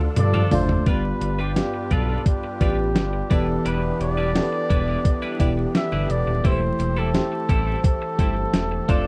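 Uplifting and nostalgic, this 1980s-style pop excerpt opens with a drum fill from a thumpy, sampler-style digital drum machine as a brief burst of mellow, chorused synth brass stabs at 0.2 seconds, while a warm flugelhorn carries a scooped, lightly vibrato-tinged melody with tape echo over a smooth, gliding synth bass, glassy bell-like FM electric piano with chorus and phaser, a bright, twangy twelve-string electric guitar riff drenched in lush chorus and tape echo, and shimmering, reedy musette accordion chords in the background, all within a dark production flecked with vinyl crackle.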